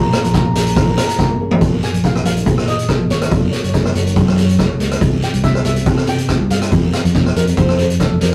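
A straight 4/4 calypso groove at 141 BPM drives this intense cut from a longer piece in Bb minor, led by an up-front street-band drum kit with a boomy kick, hi-hat, rim clicks and toms, plus a drum fill at 1.4 seconds. A fingered electric bass sits prominently beneath, warm and amped, while a thumb-plucked nylon-string guitar adds very quiet classical accompaniment and a raspy, compressed guiro scrapes in the background. The lead steel pan, played with soft rubber sticks, carries the melody with a shimmering yet dark, mellow tone. The harmony moves from Bb minor through Gb and C to Fsus4 and then F. At 7.4 seconds a breathy alto saxophone enters with a close-miked, whispered jazz line full of vibrato and scooped notes. The recording has a rough rehearsal-room quality, with tube saturation and a moderate small-room reverb.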